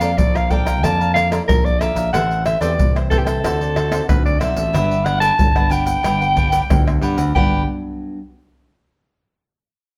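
Samba and choro in a lively, playful mood, where a raspy, growling soprano saxophone sings the jazz-style lead with vibrato and scooped notes over crisp picked cavaquinho, a full-bodied fingerpicked nylon-string guitar with finger squeak sitting in the background, a bright picked electric bass, and close, hard-handed tube shaker, pandeiro, deep surdo and tamborim, all heard as a band playing live in one room with moderate studio reverb.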